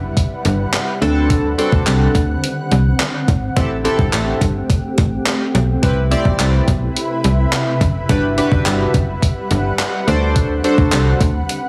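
A shimmering, ethereal pad and a snappy, slap-like FM bass open this upbeat, summery dance-pop excerpt together, both breathing with sidechain pumping as the chords move from Gmaj7 through D7, Am7 and Cmaj7. A gated 80s digital drum machine arrives almost at once with a thumpy, overdriven kick, hi-hat and handclaps, sitting up front under gated reverb alongside the metallic-edged bass. Glossy, chorused retro synth keys enter at 1.0 seconds with bright pulse and sawtooth tones and a filter sweep, and they play a short fill from 9.5 seconds. Behind them the pad holds sustained, mellow, detuned chords with an octave-up shimmer and long release. A very quiet, hollow group handclap with a live-room feel joins at 6.4 seconds, and the whole mix carries a heavily compressed, radio-like sound with light digital ambience.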